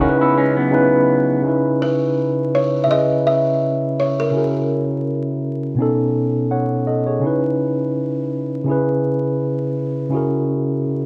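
A lazily swung 83 BPM hip hop groove in C# minor carries this melancholic, hazy excerpt, where a mellow tine electric piano plays its jazzy chords, moving through C#m7, C#m9, F#9/C# and B9, throughout; a slightly broken-up, lo-fi electric guitar with analog delay sounds only until 1.4 seconds, and a buzzing, woody kalimba melody rings from 1.8 to 5.2 seconds, all steeped in dark small-room reverb and vinyl crackle.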